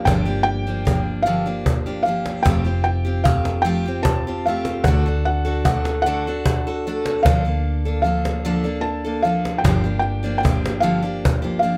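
A felt-muted upright piano carries a soft, mellow melody from the opening moment, its audible action noise lending an intimate, natural closeness, while a picked steel-string acoustic guitar sounds its bright, full-bodied dreadnought accompaniment beneath. This haunting acoustic folk passage for a small band moves in an unhurried 6/8 with a straight feel, and it is cut from a longer piece. A woody fretless electric bass anchors the low end with a dark, round, punchy, hollow-body tone, and a cajon enters at 0.1 seconds, up front with faint snares and the ring of a live room. The guitar sits forward in the mix, its finger squeak audible, and light reverb gives the ensemble gentle space. The harmony drifts from Gm7 through Fadd9, D and Bbmaj7/D before settling back on Gm7 at 9.6 seconds, and the cajon stops at 11.4 seconds.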